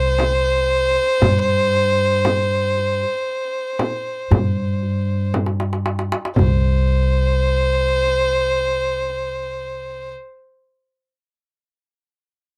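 Arabic maqam ensemble music, longing and soulful, moving at 116 BPM in a straight 10/8. A single up-front violin carries the melody around C5 with a nasal, intense tone, light vibrato and an airy bow, while a woody pizzicato upright bass holds the low end. A deep clay-shell darbuka, played with hard hands and sounding compressed and saturated, joins a small, bright frame drum from 0.2 s, with a drum fill at 5.3 s before both drums stop near 6.9 s, all captured in a dry, close 1970s-style studio sound in this fragment of a longer piece.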